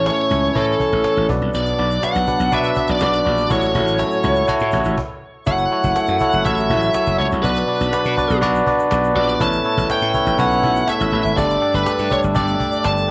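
A bluesy, overdriven lead guitar sits up front and carries the melody, its picked, distorted tone colored by cassette tape and a tape echo. This is an uplifting, glossy slice of 1980s-style pop at 122 BPM in a straight 4/4, cut from a longer piece. Beneath the guitar, a bell-like tine electric piano rings clean and direct, while a brassy analog pad with a soft attack and a sawtooth edge holds sustained chords in the background, shimmering with chorus. A bright, growly slap bass punches through, and a snappy cajon with snares plays from a live room further back, joined at 1.5 seconds by a grainy, close egg shaker. The band stops briefly between 5.0 and 5.5 seconds after an opening section on A, Bm and A6, then moves into a second section that runs through F#m7, Bm, Aadd9 and Gsus2, all bathed in a moderate spring reverb with the character of a home cassette recording.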